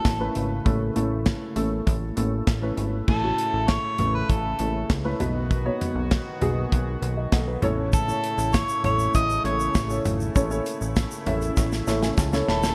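Piano-driven pop with a hopeful, anthemic mood, cut from a longer piece in a steady, straight four-time groove. A mellow harmonica carries the melody up front with light vibrato, scooped notes and a vintage tone. A dark, woody upright piano, touched with analog chorus, accompanies it alongside an acoustic drum kit with a punchy kick and a smooth, small-room sound, and a plucky, funky analog bass. At 3.1 seconds a shimmering, retro pulse-width pad slips in behind with soft, detuned sustained chords, and a grainy egg shaker joins at 7.9 seconds. The drums and piano share a fill from 11.6 seconds, all set in light reverb with a bright 1980s-style digital production.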